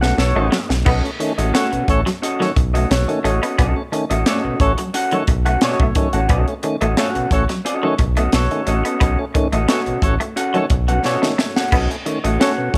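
A drum fill on a crisp fusion kit opens this energetic funk excerpt at 88 BPM in B mixolydian, over a B9 chord. Alongside it play a round, deep analog bass up front, a slightly broken-up electric guitar through a small old amp, a bright, twangy clean guitar riff with tremolo, and lightly overdriven tonewheel organ stabs through a slow rotary speaker and slapback echo. A tight, vintage horn section joins at 0.2 seconds with a second line, also carrying slapback echo, while the kit's punchy kick and high-tuned snare sit forward in a small, lightly reverberant room, and another drum fill arrives at 11.0 seconds.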